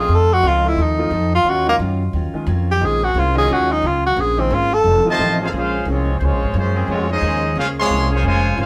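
A brisk swung 4/4 drives this swinging, brassy jazz clip from a longer piece, with a woody pizzicato upright bass up front and a fingerpicked steel-string acoustic guitar, a warm upright piano and a tight trombone section holding sustained chords in the background. A breathy, whispered tenor saxophone solos with vibrato and scooped notes until 5.1 s, when a clear trumpet section takes over the melody up front and a bright trombone section adds a present second line. The band plays live together in one room with moderate studio reverb.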